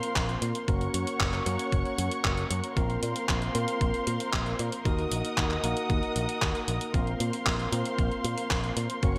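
The picked electric bass, bright and punchy through its envelope filter with a touch of tube saturation, drives this short italo disco excerpt, entering at 0.2 seconds alongside a thumpy electronic kick drum. Up front, a detuned 8-bit drum machine supplies handclaps and hi-hat through gated reverb, with a tape-warm edge. A clean tine electric piano plays stabs through a delay, while a muted string section sustains veiled, distant chords with soft attacks and vibrato above it. The harmony moves from Bbsus2 to Gb, back to Bbsus2, then to Ebm before returning to Bbsus2, giving the groove a danceable yet nostalgic feel. A moderate plate reverb and bright 1980s-style digital production tie the parts together in a polished studio sound.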